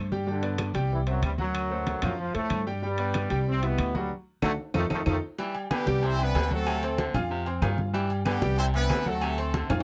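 A bright trombone section carries the melody up front in this sunny, danceable salsa excerpt in G major at 188 BPM, playing until 5.2 seconds. A band accent and a drum fill lead into the second part, where a clear, tight horn section with light vibrato and octave doubling takes the tune from 5.7 seconds. Beneath it, a raspy, gritty baritone saxophone with a vintage edge adds a second line in the background from 5.4 seconds. A brilliant concert grand piano with deep bass supplies the accompaniment throughout, and an up-front pizzicato upright bass with steel strings gives a woody, dark bottom. The percussion comprises low-tuned, damped congas played with soft hands, ringing metal-shell timbales and agogo bells in a live room, and small-room claves in the background. The harmony cycles through G, C, D7 and F, and the whole has the dry, close sound of a 1970s studio with light reverb.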